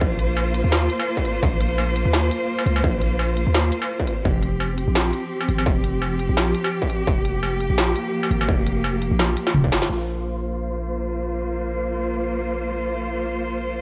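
Lightly reverberant and cassette-worn like a home recording, this heavy, spacious half-time drum and bass cut moves at 170 BPM with a gentle swing, its bowed cello section holding vibrato-rich chords through sampler grit, tape color and a pumping sidechain. A deep, sine-like 808-style bass with tube saturation decays beneath a distorted electronic kick and an up-front industrial kit of clanging snare, smooth hats, struck metal and toms, the kit muffled by low-pass filtering. A drum fill at 9.2 s and a band accent lead into a closing passage from 9.9 s where the drums have stopped and a filter sweeps across the cellos over the bass.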